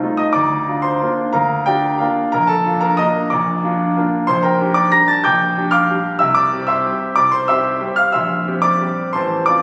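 Classical piano waltz in B-flat major, elegant and graceful, moving at 184 BPM in 3/4 with uneven beats and a flexible rubato feel. A solo concert grand piano plays throughout, up front, spanning A1 to Bb6 with clear, natural tone, deep bass and long sustain as the harmony passes from Bb through Gm7 to C and C7. The short cut carries the lush tail of a scoring-stage reverb and the compressed studio ambience of a phone recording made in the space.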